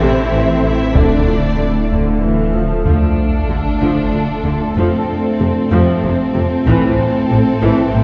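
Tense and vast, this slow cinematic cue blends orchestral strings with electronic textures in a straight 6/8 at 63 BPM, set in D minor and cut from a longer piece. A dark, distant violin section carries the melody with expressive vibrato, shadowed by a smooth, lush second violin line, while a close, rich viola section fills in the accompaniment. Underneath, a very quiet cello section and a smooth double bass section anchor the low end, joined at first by a thick, saturated sub bass that stops at 2.9 s. A shimmering, ethereal pad with octave-up shimmer, chorus and its own reverb sustains the chords, which move from A minor through D minor and F before returning to A minor. Heavy-stick taiko drums sit dry in the background from 1.0 s, and at 2.9 s an electronic sub drop and riser arrives with an impact. The whole is heard from further back in a reverberant scoring stage, lending the strings a sense of scale.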